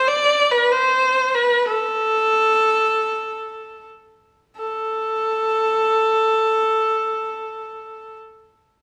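A solo bowed kamancheh sits up front, its clear, focused tone carrying a hypnotic, longing line in the Turkish tradition. The single player moves in free time within a narrow span from A4 to D5, shaping notes with vibrato and portamento, tuned to A4 = 439 Hz. The fragment, cut from a longer piece, falls into two parts, with the second beginning at 4.6 seconds and the instrument sounding until 8.2 seconds. A moderate recital-hall reverb, about 1.6 seconds long, surrounds the kamancheh with a sense of open space. The overall effect stays hypnotic and full of longing throughout.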